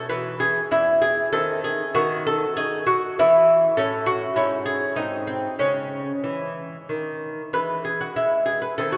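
Bathed in a long cathedral reverb, this short excerpt from a longer piece is a flowing, dance-like baroque-style classical dance in 3/4 at 91-102 BPM, played rubato by a solo lute that sits up front with a bright, delicate, fingerpicked sound on nylon double strings, some octave-doubled, as the harmony turns from E major to C# minor at 3.8 s and returns to E at 7.5 s.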